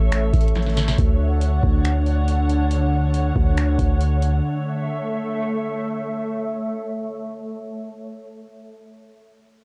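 A glassy FM pad and a long, deep 808-style bass open this short excerpt of dreamy, floating cloud-rap together, the pad holding sustained chords in A major that move from A to Dmaj7 at 1.0 seconds and back to A at 4.4 seconds. The bass, with a sine tone and fast attack, sits up front alongside a booming analog drum machine, whose deep kick, crisp snare, metallic hi-hats and finger snaps carry a tape-softened character from being re-recorded in a small room. The beat runs at 139 BPM in 4/4 with a half-time feel, and a drum fill at 0.6 seconds leads into the main section. The ethereal pad, shaped by ensemble chorus, built-in reverb, sidechain pumping and cassette tape coloring, takes a filter sweep from 1.0 seconds onward. The bass and drums drop out around 4.4 seconds, leaving the mellow pad on its own until the cut at 7.9 seconds, all within a dry, intimate home cassette recording.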